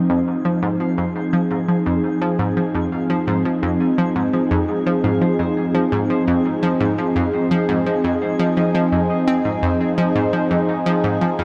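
A steady, straight 4/4 pulse at 85 BPM carries this expansive, cosmic stretch of sequencer-driven space music in F minor, resting on a single Fm7 chord throughout its 11.4 seconds, cut from a longer piece. Up front, an analog pluck repeats a low riff with a round, detuned sawtooth bite, a filter sweep, and chorus and analog delay trailing each fast, short note. Beside it, a sweeping resonant pad holds sustained chords, its vintage, warbling tone slowly swelling open under a lush chorus. A clean electric guitar fades in across the whole passage, picking bright arpeggios in the background through an analog delay. High above, a very quiet granular texture twinkles on a single Ab5 with an octave-up shimmer. The dreamy mix is soaked in a huge ambient reverb that lets every sound hang in the air.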